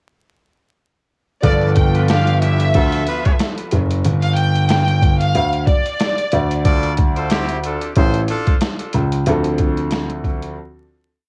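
A dark grand piano stands out most, playing a deep, looped bass line with chromatic approach notes that anchors this reflective, dark boom-bap hip-hop piece at 92 BPM with a swung sixteenth-note feel, up front beside a gritty, compressed sampler-style kit with a thumpy kick, medium-tuned snare and sixteenth-note hats in a laid-back beat. Above them, a lush bowed violin section loops a short melody with vibrato until 6.6 seconds, a tight jazz-style trumpet section repeats short riffs, and a woody upright piano plays chopped chords that return at 9.3 seconds as the piece fades out toward 11.3 seconds. Plate reverb and analog delay color the violins and trumpets, while cassette tape and vinyl crackle give the whole a home-recorded character over a shift from G9 to Dm7.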